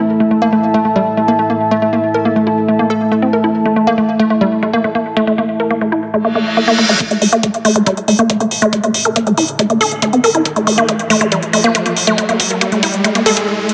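Psychedelic trance at 139 BPM in a straight 4/4, driving and intense, in a short cut from a longer piece tuned to A4 = 436 Hz over an A5 chord. A woody, wave-folded pluck carries the riff up front from the start, its dark, percussive tone treated with chorus, digital delay and sidechain pumping, while a deep, moody pad with a warbling vintage character and a sub octave sustains beneath it, also chorused and pumping. A reverse cymbal arrives at 6.3 seconds, and at 7.0 seconds the build-up begins as a metallic, up-front electronic hi-hat and a knocking, tape-warm kick enter, both layered and re-recorded in a small room, with a very quiet, tight sawtooth sequencer bass joining just after. Through this second half a riser runs alongside a filter sweep on the synth arpeggio sound, a drum fill runs from 10.5 seconds, and everything stops at 13.5 seconds. A lush hall reverb bathes the mix, giving the whole a wet, spacious sheen.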